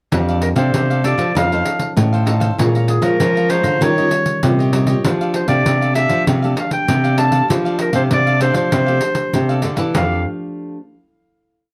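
Joyful and playful, this short, complete samba and choro piece has a straight four-beat feel. A bright clarinet leads from 0.4 seconds, up front in a classical style, spinning a motif-based melody built from sentence-like phrases. Beneath it, one nylon-string guitar plays a fingerpicked samba bass figure close to the listener, while a second, deeper nylon-string guitar adds thumb bass and syncopated plucked chords. A crisp, picked cavaquinho strums in sixteenths, and a jingly pandeiro played with hard hands drives the rhythm. The harmony moves through rich extended chords before returning home, and the piece closes on a final chord at 10.0 seconds, all set in a small room with a dark, warm production.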